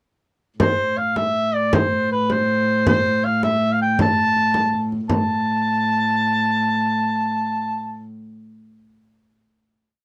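Ancient and driving, this short medieval dance in A minor moves in a straight 6/8 at 108 BPM, counted in dotted quarters, and speeds up from 0.6 to 7.2 seconds. Up front, a solo shawm carries a folk-style modal melody between B4 and A5, clear and ornamented with vibrato, though its tone sounds distant and roomy. Beneath it a single bowed, fretted viola da gamba holds a drone on A2, its gut-string tone reedy and ringing with an airy bow and light vibrato in a period style. A frame drum played with hard hands keeps an evenly spread pattern in a small-room sound until 5.3 seconds, leaving the melody and drone to sustain the final note that begins at 5.1 seconds. The whole piece has the dry, close feel of a 1970s-style studio recording touched with light reverb.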